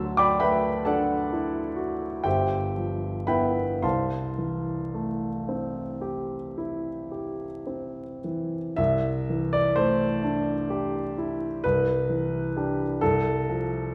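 A recital hall's wet reverb and vinyl crackle frame this luminous, dreamy excerpt of impressionist classical solo piano in C major, where a warm, natural baby grand sits up front and drifts with rubato through a slow 9/8 at 34-44 BPM in dotted quarters, ranging from G1 to E6 across colorful chords like Dadd9, G6, C6 and C69 before settling on a rootless Dm7/C at 13.0 seconds.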